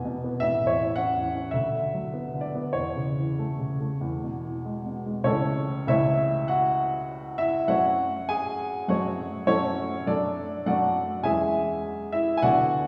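Hopeful and lyrical, this short passage cut from a longer romantic character piece for solo piano moves in 4/4 with a flexible, rubato feel, the tempo drifting between roughly 93 and 108 BPM. A single upright piano carries the whole piece from start to finish, its woody, up-front tone spanning from A1 to G#5. The music sits in A major, with the opening phrase moving from A through Bm/D and A/E to E before a second phrase begins at 5.3 seconds on A/C#. That later passage turns toward F#m, then D/F# and C#m/E, lending the line a tender, searching colour before the clip ends at 12.9 seconds. A generous, wet reverb of about 1.8 seconds surrounds the instrument, giving it the resonant air of a church or concert hall.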